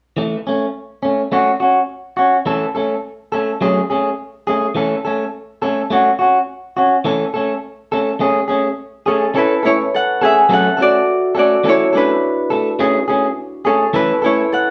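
Straight 4/4 at 105 BPM drives this joyful, danceable highlife fragment in A major: a warm, slightly broken-up electric guitar, picked and compressed, sits up front with accompaniment from 0.2 s, cycling through A, A6 and F#madd9 before a Dmaj7 colours the second section at 10.5 s, while a bright, thumb-plucked Celtic harp enters up front at 9.1 s with a ringing acoustic melody, the two captured as a band playing live in one room under a wet studio reverb.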